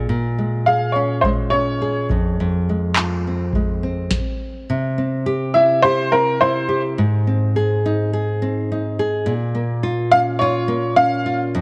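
A clear, woody upright piano with audible action noise carries the melody up front in this easy-going, sunny acoustic pop excerpt at 105 BPM, over a full-bodied, fingerpicked nylon-string guitar playing chords from Bbm7 and Fm to C, Ab and Bbm, while a booming, dry analog drum machine with a deep kick, tonal snare and handclaps plays only from 1.2 to 4.2 seconds, and after a brief stop the piano returns at 5.5 seconds in a small room with light reverb.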